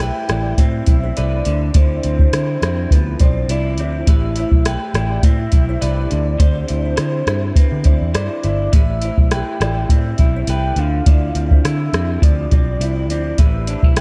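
A light reverb softens this short cut from a longer indie and bedroom pop piece, whose mood is wistful and mellow with a gently swung sixteenth-note feel. Up front sits a soft vintage rhythm box, overdriven, with a deep kick, metallic hi-hats and rim clicks, alongside a dark, round, foam-muted picked electric bass. An electric guitar through a small old amp supplies slightly broken-up, compressed, lo-fi accompaniment, coloured by lush chorus and a vibrato effect. The melody comes from a soft octave-layered synth lead, a detuned blend of triangle, sawtooth and sine with a sub octave, full and sustained, treated with lush chorus and delay. Further back, a woody kalimba plucks a short, airy second line through ensemble chorus and delay. The harmony moves between Am9, Dm9 and D9sus4, with every part playing across the full 14 seconds.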